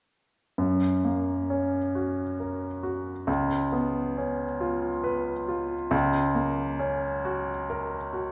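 Tender and nostalgic, this brief fragment of a romantic classical nocturne in 12/8 with rubato gives a solo grand piano, bright and intimate with its action noise clearly audible, from 0.6 to 8.3 seconds, moving from F# through C#7 to F#/C# within a wet recital-hall reverb heard from further back in the room.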